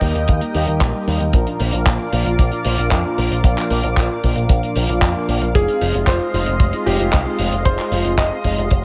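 Italo disco in a bittersweet, melodramatic mood, this short cut pairs a lush, detuned sawtooth pad with phaser and chorus against round, brassy synth stabs touched by tape echo, while a punchy picked electric bass with an envelope filter sits up front over a tight, dry kick drum and a damped 70s kit of handclaps and hi-hat, all moving from Eb to Bb and on to Fm7, where a clear concert grand piano enters at 5.5 seconds with an echoing melody in a light small-room reverb.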